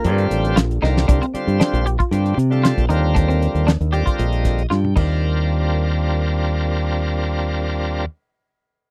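A straight 4/4 groove at 116 BPM drives this slick, bright electric jazz fusion fragment in Eb major, cut from a longer piece, with a damped 70s drum kit (fat snare, tight kick, dark cymbals) and a modern fingered electric bass sitting up front under Ebmaj7, C9sus4 and Ebmaj9 chords. A shouting, lightly overdriven tonewheel organ through a slow rotary speaker carries the accompaniment with audible key click and takes a fill from 3.7 s. Meanwhile a compressed electric guitar at the edge of break-up adds chorused stabs, and the drums stop at 5.1 s. A fingerpicked flamenco guitar with tape echo and finger squeak sounds briefly in the background, and a very quiet, silky string machine holds soft sustained chords at the opening, all in a dry, close 1970s-style studio sound.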